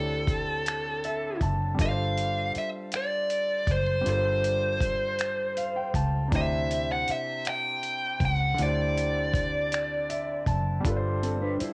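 This home recording on cassette has a tape-worn haze and light digital reverb, carrying a tender, warm slow R&B groove in six-eight that is cut from a longer piece. A dark, smooth lead guitar, overdriven, picked and up front, sings the melody from the start until 10.5 seconds, tinted by cassette tape. Beneath it a clear concert grand piano with deep bass and long sustain plays the accompaniment and adds short fills, over harmony that moves between D9sus4 and G9sus4. A foam-muted fingered electric bass supplies round, amped low notes, and a dusty sampler-style kit of finger snaps, hi-hat and thumpy kick, compressed and gritty, enters at 0.3 seconds. In the final moments, from 11.2 seconds, a mellow, clean electric guitar with harmonic tremolo slips in with a brief second line.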